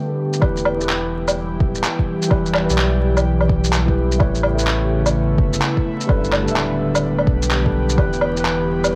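Swung 16ths at 127 BPM in 4/4 drive this melancholic, wistful future garage fragment in E dorian, where a deep, overdriven electronic kick with tape grit sits under muffled, up-front shaker, woodblock and handclaps, a round sine sub bass holds the low end from 0.4 seconds, and a breathy, chorused pad and a clean tine electric piano with analog delay both pump against the beat through Em, Aadd9 and Gadd9, all wrapped in light reverb, vinyl crackle and a homespun cassette haze.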